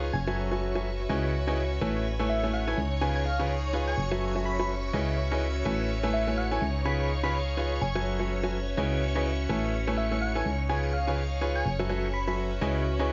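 A brilliant grand piano riff sits up front with audible action noise and tape echo, leading this bittersweet, soulful house passage with its gently swung feel, cut from a longer piece. A punchy, round FM bass anchors the low end, while a gentle, keys-like synth lead with chorus and tape echo carries the melody from 0.1 to 12.3 seconds. Behind them, a shimmering vintage string machine holds sustained chords and an earthy, close chamber string section adds bowed texture over a cycling F#m11, C#m9, Amaj9 and C#7 progression, all in light studio ambience.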